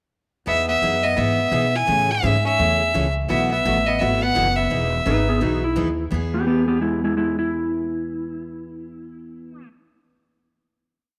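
A swung 170 BPM four-four pulse drives this playful, down-home western swing piece in E major, with a bright, full-bodied dreadnought acoustic guitar picking four-to-the-bar rhythm over a woody, thumpy gut-string upright bass walking beneath. From 0.5 s a biting, up-front fiddle states a motif-based melody with light vibrato, while a dark hollow-body electric archtop, touched with tape echo, shadows it with a harmony line mostly in thirds. At 5.1 s a clean lap steel slides in with answering blues licks, and the band settles on a final E chord at 6.1 s inside a moderate plate reverb.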